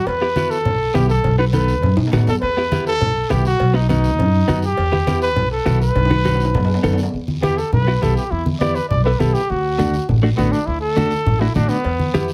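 Set in a moderate studio room, this fiery, driving cumbia excerpt puts a breathy, whispered trumpet up front with plate reverb, carrying the melody over a woody, thumpy pizzicato upright bass and a scooped, compressed clean electric guitar recorded direct. Low-tuned congas with a thick skin and ringing metal-shell cowbell and timbales sit in the background, joined by a raspy, close guiro, with drum fills before the trumpet moves into an intimate, lightly vibrato solo at 7.1 seconds. At that point the cowbell and timbales drop out, returning only at 11.8 seconds.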